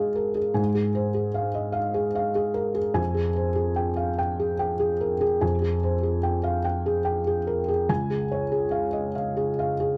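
Neoclassical minimalist piano in a rubato 6/8 at 49 BPM, this intimate, hopeful fragment of a longer piece features a solo felt-muted upright piano, soft and mellow with thick felt, audible action noise and an up-front presence, ranging from Db2 to Ab5 over chords moving from Ab6 to Fmadd9 at 3.0 seconds and Db at 7.9 seconds, set in light reverb with a dark production.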